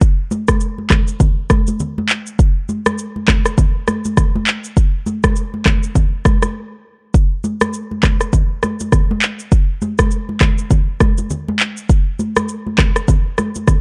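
Afrobeats at 101 BPM with a swung sixteenth-note feel, this romantic, joyful fragment from a longer piece sets an up-front electronic afro-pop kit of deep kick, handclaps, rim click and shaker, roughened by vintage 12-bit sampler grit, beneath softer, close and dry congas played with soft hands, bright and thin-skinned, that enter at 0.3 seconds, all within a dark digital ambience and a brief break at 6.5 seconds.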